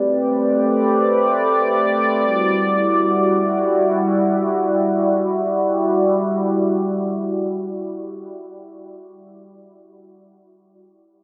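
A lone sweeping, resonant synth pad opens this hazy, spacious hip hop fragment, sitting up front with a nasal, sawtooth edge, ring-modulated color, chorus and a low-pass filter sweep that shapes it through its first 5.4 seconds. Its slow attack and long release let sustained chords drift from Am11 to Em9, evolving gradually across a span of G3 to D5. A huge ambient reverb with a 7.6-second tail surrounds the sound, and the passage shifts into a second section at 5.4 seconds before this cut from a longer piece ends.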